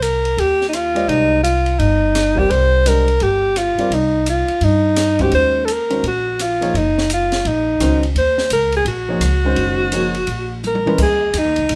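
A clear, up-front alto saxophone carries a searching, cool modal jazz melody with soft-attack vibrato at a swung 170 BPM in 4/4, over a woody, steel-strung pizzicato upright bass, a dry compact cocktail drum kit, with dark cymbals, a high-tuned snare and a punchy kick, that plays a fill at 10.6 seconds, and a warm concert grand piano with deep bass entering at 0.9 seconds, as the harmony moves from Cmadd9 to Ebm7 and Eb9sus4 in light reverb, in a cut from a longer piece tuned to A4 = 437 Hz.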